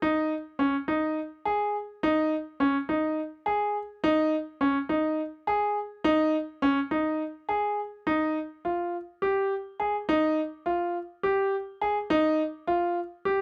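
Heard up close and in fine detail, this short fragment sits in a small room whose moderate reverb gives the notes a brief, natural halo. A bright concert grand piano plays alone from start to finish, its tone brilliant and up front, with a deep bass body beneath the sparkle. The piece is progressive instrumental music in 7/8, counted at 208 BPM in eighth notes with a straight feel, and its mood is driving and tense. The piano stays within a compact span from Db4 to Ab4, which keeps the line tightly focused in the middle of the keyboard. At 8.1 seconds the music moves into a new section, which carries on until the clip ends at 13.4 seconds, cut from a longer piece.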